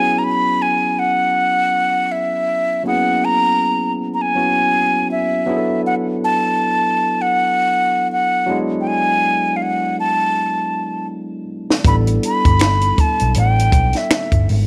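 Cut from a longer piece, this soulful R&B and neo-soul passage rides a slow 80 BPM groove in 4/4 with swung sixteenths, its harmony moving through F#9sus4, E9sus4 and A9sus4. A breathy, close-miked concert flute carries the melody up front with a soft attack, straight tone and slapback echo, over a barky tine electric piano lightly overdriven through a combo amp. At 11.7 s a dry, compact cocktail kit enters with finger snaps, hi-hat, tight kick and high-tuned snare, and at 11.9 s a round, dark, foam-muted picked electric bass joins, the whole set in a small room with light reverb.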